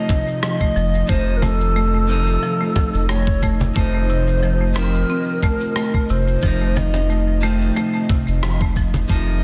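A breathy, reedy ney carries the melody in this meditative organic downtempo excerpt, its bright, distant tone shaded with vibrato and digital delay before it falls away at 7.4 seconds. Beneath it, a buzzing marimba struck with hard mallets plays dry, woody arpeggios with delay, while a clean, picked electric guitar adds accompaniment that pumps gently with sidechain and delay. An ethereal, airy pad sits in the background holding sustained chords over an F7 harmony, softened by ensemble chorus and its own reverb. The groove moves at 90 BPM in 4/4 with a light swing on the sixteenths, built from a gritty, thumpy electronic kick, a sampler-style cabasa and rim click with soft clipping on the snare, and a faint cajon tucked behind them. A round sine sub bass arrives at 0.8 seconds and sits up front on a low F, all set in light digital ambience within a dense, heavily limited modern master.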